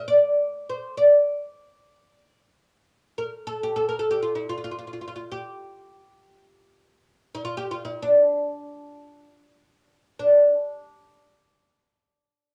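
A solo oud opens this passage of Arabic maqam music, playing in free time in D maqam bayati, with a longing, melancholic mood. The plectrum-plucked, fretless instrument sounds bright and woody, its double strings sitting up front as it moves between D4 and D5. A moderate studio reverb surrounds it, mixed with the small-room ambience of a home cassette recording. The oud plays alone until 10.5 seconds, and a new section begins at 10.2 seconds and runs to 12.5 seconds. The passage is cut from a longer piece.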